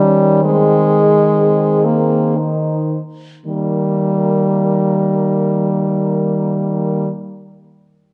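This tender, serene fragment of a lyrical classical piece for horn quartet opens with all four French horns together in an unhurried, rubato triple metre that slows through the first 3.5 seconds before settling onto the home chord at 3.5 seconds. Up front, a mellow horn sustains the bass while a warm accompanying horn with light vibrato and a soft attack fills the middle. Behind them, a clear, vintage-toned melody horn sings gently in the background, and a distant, roomy second line sits very quietly underneath, all set in a moderate recital-hall reverb with a dark production.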